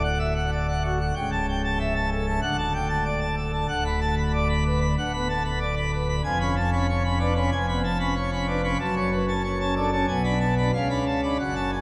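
A solo pipe organ on full plenum, its mixtures bright and brilliant, carries this dramatic, stormy classical toccata at 94 BPM in a straight 4/4, and it is a short passage cut from a longer work. The romantic voicing spans C#1 to B5, moving from D major through chromatic turns to F# minor and ending on a tense C#7b9 chord at 10.7 seconds. A wet church reverb with a 2.8-second decay gives the sense of listening from further back in a large church.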